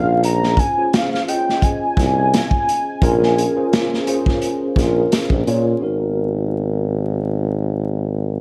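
A swung sixteenth-note groove from a crunchy, gritty breakbeat kit with a punchy kick and a dark, rolled-off top enters at 0.2 s and drops out at 5.6 s, driving a late-night, soulful neo-soul R&B excerpt in which a velvety, detuned sawtooth synth lead with chorus and vibrato carries the melody over mellow tine electric piano chords touched by ensemble chorus and a clear, up-front tuba bass with vibrato, set in a small room's reverb and vinyl crackle as the harmony moves from A#m9 to G#m9 at 5.8 s.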